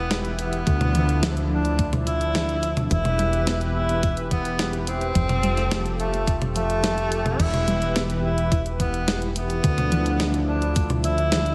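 Synthwave with a moody, nocturnal air, this short excerpt sets a tenor saxophone melody, vibrato-laden and roomy with vintage 12-bit sampler grit, digital delay and slapback echo, over a brassy, detuned sawtooth pad that carries chorus, tremolo and sidechain pumping through chords moving among Em, Dmadd9 and Fadd9. Underneath, a fat, tube-saturated analog bass sits up front, while a warbling, lo-fi pluck plays very quiet arpeggios from 0.1 seconds alongside a clean 12-bit drum machine with a fat snare, hi-hat, toms and crash. A thumpy, tape-toned electronic kick joins at 0.7 seconds, and the whole mix opens into a lush hall reverb with a big arena sound and lossy compression artefacts.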